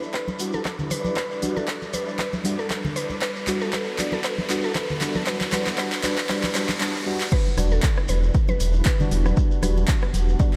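A relaxed deep house excerpt opens on a woody, mallet-like synth pluck carrying the melody through chorus and diffuse delay, over a silky string machine with phaser and ensemble chorus, a grainy shekere, a background riser and soft-handed congas. A punchy, overdriven kick and a layered kit of smooth hats, handclaps, ride, crash and rim clicks set a swung groove, while deep, dark chord stabs with chorus, phaser and tape echo move through a filter sweep during the build-up. Shortly after the drop at 7.3 seconds, a round analog bass enters up front at 7.6 seconds, pumping with the sidechain like the stabs and strings, and the whole mix is soaked in a lush hall reverb for a dreamy, warm feel.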